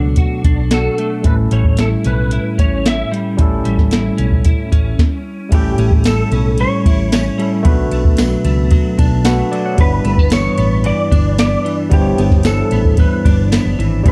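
This hazy, nostalgic bedroom-pop excerpt in G lydian at 112 BPM opens on a barky, lightly overdriven tine electric piano with cassette-tape grit, a scooped, compressed clean electric guitar with ensemble chorus and a warbly pitch drift, and a round, hollow-body fingered bass, with an up-front analog rhythm box of deep kick, tonal snare, metallic hats and ride joining almost at once. A slide lap steel carries the melody from 0.7 seconds with volume swells and chorus over Bm7, A7 and G6 chords, while a brief stop precedes a jingly, band-limited tambourine tucked in the background from 6.1 seconds, and the electric piano adds a short fill. A lush, detuned sawtooth unison pad is barely audible at 14.0 seconds, all set in a dark production with light reverb.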